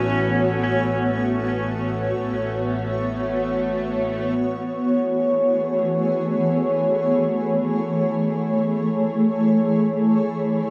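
Luminous and peaceful, this free-time ambient fragment in A major rests on an up-front, blurred granular cloud pad holding sustained chords throughout, with a detuned, sawtooth-edged string-like drone carrying phaser in the background, while a twangy clean electric guitar plays arpeggios through tremolo and delay until 1.6 seconds and an intimate bowed double bass section holds the bass until 4.4 seconds, where the harmony moves from Bsus2/A to Amaj7 inside a long cathedral reverb.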